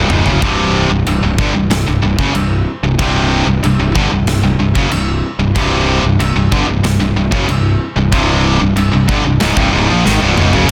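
A straight 4/4 pulse at 94 BPM drives this aggressive, dark heavy metal cut on a C5 power chord, where a fuzzy, growling fingered bass and a tight, up-front distorted guitar riff lead, backed by a high-gain guitar and a double-tracked overdriven guitar entering at 0.4 seconds, while a punchy acoustic rock kit with bright china and crash cymbals, snare, kick and toms plays fills at the start and from 10.1 seconds, all in a small room with a dense, heavily limited modern master.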